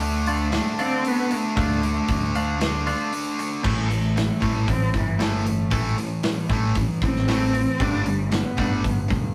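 The drums settle into a straight 4/4 half-time feel at 115 BPM for the first 3.6 seconds of this brooding, cathartic stretch of quiet-loud alternative rock in A minor, cut from a longer piece. The big acoustic kit sits up front with a punchy kick, a medium-tuned snare, hi-hat and crash cymbal. A growly, overdriven picked electric bass holds down the low end beneath a high-gain distorted guitar riff, and a twangy, compressed twelve-string electric guitar picks clean arpeggios. A dark, woody bowed cello carries the melody with vibrato and a slapback echo, taking a solo from 3.6 seconds as the harmony moves from Dm to Am and then to Gadd9 at 7.8 seconds. The rough rehearsal-room recording has a moderate booth ambience that keeps the ensemble raw.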